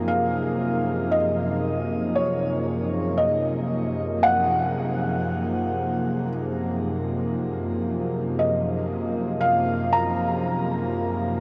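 Serene and warm, this ambient fragment in 3/4, cut from a longer piece, sets a mellow felt-muted upright piano melody, intimate and up front with audible action noise, shimmer reverb and delay, over the sustained chords of a slow-attack, detuned sawtooth analog pad thickened by chorus and shimmer, all bathed in a huge, wet reverb and the worn, warbly pitch drift of old cassette tape.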